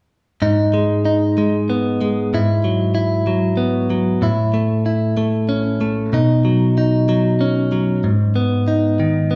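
This aching, dramatic pop piece moves in a slow 6/8 at 63 BPM, counted in dotted quarters, in G# Phrygian with tuning set slightly high at A4 = 441 Hz. A bright, clean electric guitar, recorded direct, picked and compressed, sits up front as accompaniment from 0.4 to 9.4 seconds. It cycles through G#m, Eadd9/G#, A and Badd9 before returning to G#m at 8.0 seconds, all played live in one room and washed in a large studio reverb.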